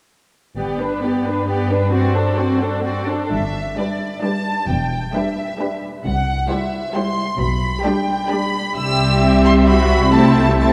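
A quick, lively classical-period movement for string orchestra in triple time, this spirited passage is cut from a longer piece. A focused, vibrato-laden first violin section carries the melody over an expressive, soft-attack second violin line, while a smooth, even viola section and cello section supply accompaniment and bass, these three sounding distant; the double basses touch in briefly at 0.6 seconds and return at 3.3 seconds as the second section begins. The bowed, lush strings sit in a wet concert hall reverb with a long tail, giving a dark, warm production.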